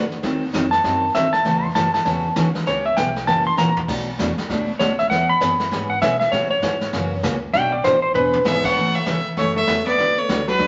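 A playful, cheerful slice of western swing cut from a longer piece, this country number bounces along at 197 BPM in 4/4 with a swung eighth-note feel in A major. From the opening, an up-front, clean lap steel guitar carries a sliding solo line over a bright, full-bodied picked acoustic guitar, a woody, thumpy pizzicato upright bass on gut strings, and a distant, roomy brush kit with dark cymbals and a punchy kick. The drums mark the phrases with short fills at 3.6 and 8.1 seconds, while the harmony moves through jazzy changes such as diminished, sixth and seventh chords. At 8.5 seconds the lap steel gives way to a biting, nasal fiddle with light vibrato taking the melody, joined by a dark, compressed hollow-body jazz guitar playing a second line. A large studio reverb and vinyl crackle with a dulled top end give the recording an old-time sheen.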